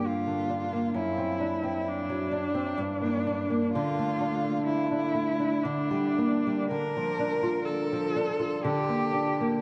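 A clear, focused bowed cello sings the melody up front, a single player with expressive vibrato moving between D4 and Bb4. Alongside it, a small, fingerpicked nylon-string guitar, also up front, supplies the accompaniment from F#2 to F4, its acoustic tone coloured by a lush chorus. This is a romantic duo in 3/4, melancholic and elegiac, unfolding with a rubato feel at roughly 54-67 BPM. The harmony moves through G minor and D7/F# before settling into D minor at 3.8 s, where Dm and Gm/D chords alternate. A cathedral reverb with a 5.5-second decay and a cassette-tape character give the mix a dreamy, soaked quality. Both instruments play from 0.0 s until this 9.6-second fragment, cut from a longer piece, ends.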